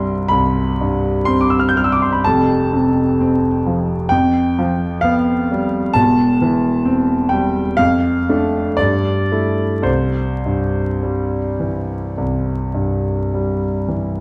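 A concert grand piano sits up front, intimate and natural, with deep bass and the clatter of its action audible as it plays a serene, nostalgic romantic nocturne in C major. The solo unfolds in a slow, rubato 4/4 around 52-67 BPM, moving through gentle harmonies before settling back on C near 9.9 seconds in this brief excerpt from a longer piece. A moderate recital hall reverb and a dark production lend an aged glow, with vinyl crackle beneath.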